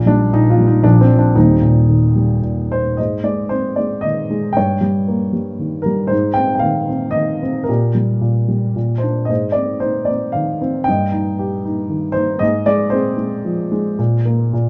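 A dark upright piano carries this short classical excerpt alone, its woody, mellow tone sitting up front with audible action noise that lends an intimate, vintage character. The playing is lyrical and relaxed, moving in a gentle 3/4 at around 115 BPM with a rubato feel that lets phrases breathe. Short sustain keeps each note close and smooth, while light reverb and a dark production soften the edges. The piano ranges from Eb1 up to G5, opening on Bb and Eb harmonies before settling into a second section at 3.0 seconds built around Ab, Gm/Bb, Cm/G and Fm/Ab. The passage ends on an Abadd9/Bb chord at 14.0 seconds, cut from a longer piece.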